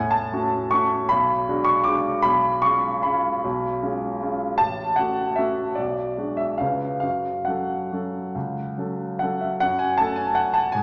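This classical piano waltz in 3/4 has a sparkling, playful mood. It moves in a free rubato that ranges between 132 and 167 BPM. A solo grand piano carries the whole fragment, spanning A1 to D6 with a smooth, vintage tone that sits up front. Its harmony circles F# minor, moving from F#m/A through G#m7b5/B to C#7 and back, tuned to A4 = 444 Hz. A wet recital-hall reverb with a 1.8-second decay surrounds the piano, and the highs are softened, rolling off above 11.0 kHz. Cut from a longer piece, it resolves to F#m at 7.0 s, and a new section begins at 9.6 s before the clip ends at 10.8 s.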